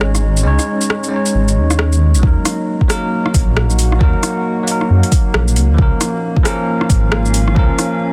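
A swung 135 BPM future garage groove in 4/4 opens with metallic hi-hats, rim click and shaker from an overdriven deep house kit, together with the bass, electric piano and pad, with an up-front, overdriven electronic kick joining at 2.2 s as the chords move from Dbsus2 to Eb minor and then Bb minor. A dark, detuned sawtooth bass rumbles underneath with sidechain pumping, while a bell-like tine electric piano with dub echo and 12-bit sampler grit plays accompaniment over a mellow, warbling tape-like pad with chorus and reverb in the background. The mood is nocturnal and rainy, and this short cut from a longer piece has little room reverb, a dense, heavily limited master and a layer of vinyl crackle.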